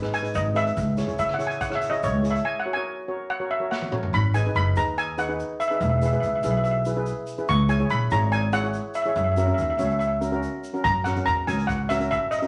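Calypso at 143 BPM, festive and sunny, where a bright, up-front lead steel pan struck with hard rubber sticks carries the melody over a mellow, dark double-seconds pan, woody pizzicato upright bass and a grainy egg shaker, while a boomy street-band drum kit plays until 4.1 seconds, closing with a fill from 3.7 seconds, then returns at 10.8 seconds, all in a reverberant room with vinyl crackle over chords moving from G#m through C#m and E to F#7.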